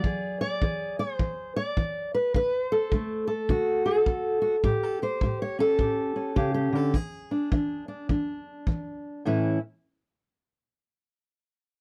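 A dark, fingerpicked steel-string acoustic guitar carries the melody up front, finger squeak audible, over a punchy, roomy kick drum with a rolled-off top and a touch of brushes in this gritty, laid-back acoustic country blues with a swung feel. The guitar moves through E7, D7 and A7 before the kick drops out at 8.8 seconds and the guitar stops at 9.6 seconds. The sound stays dry and close, with little reverb, as this fragment of a longer piece ends.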